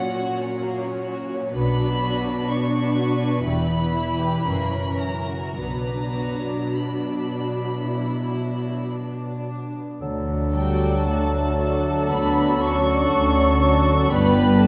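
A violin section carries the melody of this slow, rubato romantic movement for symphony orchestra, singing high between F#5 and C#6 with light vibrato and an intimate sul tasto tone, while a second violin line floats beneath it. The mood is solemn and melancholic, moving at 51-64 BPM in 4/4, first in B minor and then turning to D major at 10.0 s. Lush violas and a pure-toned cello section hold the accompaniment and bass, double basses join in the background at 1.6 s, and a thumb-plucked concert harp adds ringing arpeggios. At 10.0 s the woodwinds and brass arrive: a mellow cor anglais and a very quiet, clear clarinet take second lines, while a bassoon and a tuba support the low end. From 10.5 s a hollow, crisp-attacked flute and a French horn section with smooth sustained chords fill out the texture, all set in a wet recital hall reverb in this passage cut from a longer piece.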